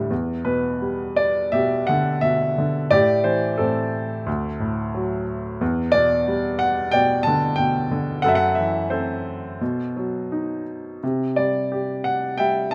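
Classical solo piano in E minor, this brooding, cool passage moves with a rubato feel around 83-94 BPM in 4/4, tuned to A4 = 441 Hz and cut from a longer piece. A clear, polished baby grand plays alone from 0.0 to 12.7 seconds, ranging from D2 to A5 through lyrical harmony that runs from Em7 through Am7 and D7, then darkens with F#m7b5 and B7b9 before settling on C. Close, detailed miking places the piano up front, with light reverb around it.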